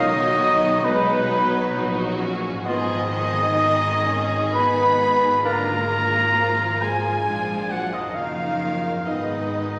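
Drenched in the reverb of a concert hall, this short orchestral passage from a slow romantic movement unfolds in a melancholic, solemn 3/4 with a free, rubato pulse. A rich, vibrato-laden violin section carries the melody in the background, while a second, closer violin line, a mellow cor anglais, a bright vintage-toned clarinet and a pure, very quiet silver flute weave supporting lines above a focused viola section and a close-miked bassoon. Horns and a faint trombone section hold sustained chords, a distant, roomy trumpet section adds stabs, a softly ringing harp plays arpeggios, and tuba, cellos and double basses ground the bass as the harmony drifts through shadowed chords such as Fm7b5/Ab and Bb7/Ab.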